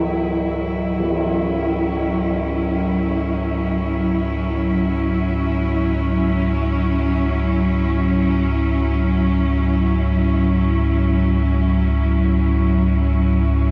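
In free time, this desolate, unsettling dark ambient drone rests on a single C# minor chord throughout the 13.7-second fragment, which is cut from a longer piece. A deep, ominous synth drone of triangle and sawtooth tones rumbles up front with a slow attack and long release, steeped in its own built-in reverb and lush chorus, and it fades in across the whole passage. Beside it, a muted studio cello section bowed con sordino holds veiled, sustained chords with light vibrato, sounding distant yet placed forward in the mix. An eerie, inharmonic FM bell, detuned and mellow with chorus and phaser, traces barely audible decaying arpeggios until 4.0 seconds. A brief acoustic tam-tam strike at 1.0 second adds bright, filtered cymbal shimmer from a live room, and a huge ambient reverb with a long tail wraps the dark, warm production.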